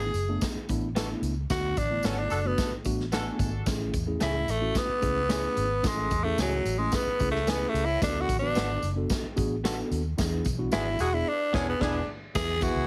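Heavily compressed, radio-like sound with a touch of reverb frames this danceable excerpt of uptempo 1960s-style soul at 111 BPM in A major, where a raspy, gritty tenor saxophone solos up front over a worn, slightly out-of-tune tine electric piano, a round, foam-muted vintage electric bass, a punchy big-room swinging drum kit, a jingly tambourine in the background, and dark, slightly broken-up guitar stabs through a small old amp with subtle chorus, while a tight, warm horn section with light vibrato adds a second line from 2.0 seconds and again from 10.7 seconds during the band accents.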